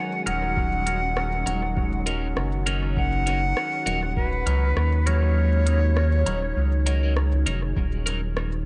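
A reedy, vibrato-touched concert flute carries the melody with dub echo from the first moment, over a warbling, nostalgic tape-like pad on an Eb minor seventh chord and a bubbling, resonant stepped-filter texture tucked in the background. This hazy, spacious ambient dub excerpt moves at 100 BPM with a gentle sixteenth-note swing, as a round, up-front analog bass, an organic electronic kit of crisp hats and rim clicks, and a twangy twelve-string electric guitar playing phased, echoing stabs under a filter sweep all enter around 0.3 seconds. A deep, tape-warm electronic kick joins at 0.6 seconds and drops out at 5.4 seconds, within a light digital ambience.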